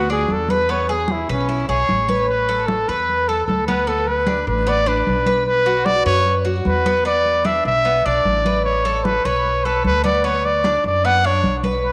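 A relaxed, danceable Cuban son and guajira excerpt in which a breathy, intimate trumpet sits up front with a vibrato-tinged melody, carrying a solo passage through the first 2.3 seconds before the band moves into a longer section of suspended and open chords. Beneath it, a metallic, double-strung Cuban tres picks arpeggios with a slapback echo, while a woody, thumpy pizzicato upright bass and bright, damped congas played with soft hands sit farther back. A lush plate reverb surrounds the whole ensemble.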